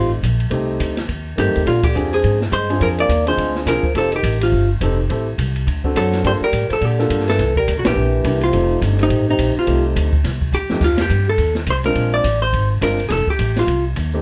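The hollow-body jazz guitar carries the melody up front, its clean, picked tone compressed and warm, over a brisk small-group swing-and-bop groove with a sophisticated, swinging mood. A cup-muted trombone plays a second line beneath it, veiled and breathy with scooped notes and a soft attack, until it drops out at 9.8 seconds. The grand piano comps with long sustain and audible action noise, while the pizzicato upright bass, woody and thumpy on gut strings, sits forward in the mix. The open drum kit enters at 0.2 seconds with dark cymbals, a medium-tuned snare and a boomy kick, and a drum fill at 10.5 seconds leads into a second pass through the opening strain. Band accents punctuate the tune, and the close, detailed miking with little reverb gives this fragment of a longer piece an intimate, small-room feel.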